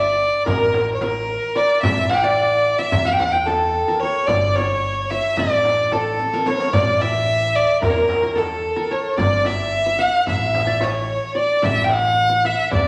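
A clear, up-front solo violin opens this passionate, stately Turkish makam ensemble excerpt in 9/8, its smooth, even bowing carrying the melody with vibrato. From the first moment it is joined by a bright-edged, plectrum-plucked qanun and a rich, earthy chamber violin section, both playing a second line, with the qanun set in the background and the distant strings very quiet. Beneath them, a pizzicato upright bass with steel strings gives a woody, thumpy low end. A crisp metal-shell darbuka enters just after the start, and a close, dry frame drum played with hard hands and a riq with bright jingles follow at 0.5 seconds, the darbuka and frame drum very quiet and the riq in the background. A drum fill marks the midpoint at 6.2 seconds, and the recording sits in a reverberant large studio with vinyl crackle and faint mains hum.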